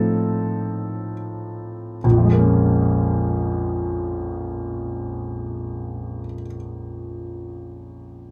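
Played in free time, this short fragment of neoclassical minimalist piano opens by slowing down over its first 2.0 seconds, settling from an F7/A chord onto Bbm7 at 2.0 seconds. A solo concert grand carries the whole 8.3 seconds, spanning Bb1 up to A4 in Bb minor, with the instrument tuned to A4 = 439 Hz. The mood is intimate and wistful, the second passage resting on that minor seventh harmony. The piano sits up front with a natural, warm character, a deep bass register and the audible noise of its action. Close, detailed microphones and a nearly dry room keep every mechanical detail present and the sound close at hand.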